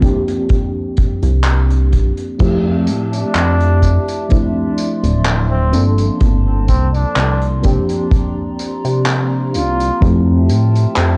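A lightly vibratoed flugelhorn carries the melody from 3.1 s to 10.1 s in this hazy, woozy vaporwave excerpt, its soft-attacked tone trailed by tape echo. Beneath it, a glossy, chorused synth bass sits up front with tube saturation, while a round FM electric piano, treated with phaser, chorus, cassette tape and tape echo, moves through C9sus4, Fmaj9, Dm9 and Gm11. A boomy, distant kick and a soft-mallet kit with cymbals, hi-hat, tambourine and handclaps keep a lightly swung pulse, and a warbling, detuned pad drifts in at 2.4 s, all set in a dark, cassette-tinged production with small-room ambience.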